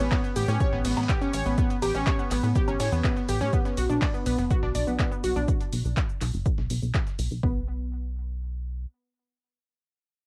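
Melodic techno at 123 BPM in B minor, melancholic and hypnotic, this short cut from a longer piece opens on a drop where a bright, warbling analog pluck plays arpeggios with chorus, tape echo and sidechain pumping over a dark, funky sawtooth bass that also pumps, moving from A to Bm after a band accent at 3.0 seconds. A punchy, tape-warm electronic kick sits up front beside an analog drum machine of handclaps, hi-hat, ride cymbal, shaker and woodblock, while a very quiet, gritty sampler-style kit adds hi-hat, shaker and a medium-tuned snare. The drums drop out around 7.4 seconds as the harmony falls away, and the pluck stops by 7.7 seconds, leaving the bass alone until 8.9 seconds, all heard through light reverb and the soft haze of a home cassette recording.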